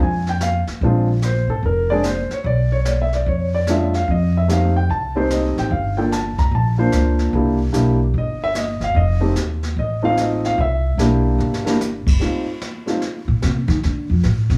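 A swinging 4/4 at 148 BPM sets a playful, sophisticated mood in this short jazz piano trio excerpt cut from a longer piece, moving through an F mixolydian progression from Bb7 through Bdim, Gm7 and C7 back to F7. An intimate grand piano carries the melody up front, its action noise audible and a plate reverb around it, until it stops at 13.0 seconds. Underneath, a woody pizzicato upright bass with steel strings sits close and plays throughout, stepping out for a solo from 12.2 seconds to the close. A brushed drum kit with dark cymbals, a medium-tuned snare and a boomy kick sits lower in the blend, marking a fill between 11.4 and 11.8 seconds. Light small-room ambience gives the whole trio a natural, acoustic feel.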